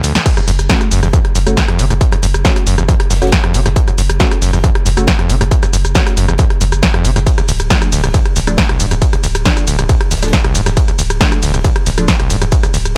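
Driving peak-time techno in straight 4/4, this dark fragment of a longer track opens on a break and drum fill before settling into a single section. A punchy analog drum machine runs from the start, its crash, ride, hats, rim click and shaker carrying sidechain pumping and its punchy snare re-recorded in a large room, and a distorted, overdriven electronic kick enters up front at 0.3 seconds. Beneath them, a very quiet compact cocktail kit adds hi-hat and a high-tuned, smooth acoustic snare with a rolled-off top. A thick, saturated sub bass with a triangle tone and low-pass filter holds the floor, while an overdriven acid bass riff squelches with gritty, resonant sawtooth plucks, distortion, tape echo and pumping. In the background, a crisp, detuned wavetable chord stab with phaser and tape echo outlines F#m before shifting to Dm at 7.3 seconds, all in a dry mix.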